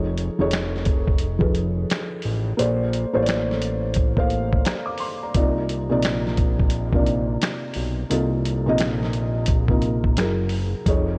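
A gritty 12-bit sampler-style drum kit, muffled and pitched down with a thumpy kick, snare, hi-hat and finger snaps, sits up front in this hazy, reflective lo-fi hip hop excerpt at 87 BPM with a swung 16th feel in C dorian, while a dark, intimate felt-muted upright piano with audible action noise behind a low-pass filter and a fat, detuned, saturated analog bass carry the chords from F7alt through Bbmaj9 and Cm11 to F#9 in a light reverb.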